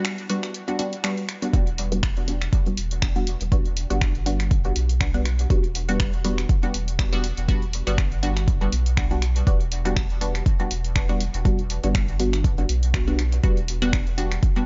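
This meditative, cavernous dub techno excerpt in E minor opens on a brief break: muted, detuned sawtooth chord stabs on Em7 run through phaser, sidechain pumping and dub echo, joined by overdriven deep house finger snaps and hi-hat, over a barely audible, moody pad. At 1.5 seconds an up-front, overdriven electronic kick and a round sine sub bass, also pumping with the sidechain, arrive to carry a swung 121 BPM groove in 4/4. The mix is dry and dark, with its highs rolled off above 7.5 kHz.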